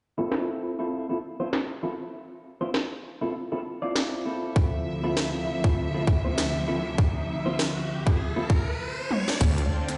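Swung sixteenths at 99 BPM drive this gritty, funky glitch hop excerpt in D minor, where twangy clean electric guitar stabs ride harmonic tremolo, pumping and tape echo over an overdriven kit with a cracking snare and filter-swept hats, bowed strings with vibrato join at 4.5 seconds beside a tight overdriven electronic kick, a riser builds from 6.2 seconds into a drum fill, and a saturated, detuned wobble bass hits at 9.4 seconds as the harmony moves from Dm9 to Dm7, all heard in a lush hall played back through a big system in a bare stone room.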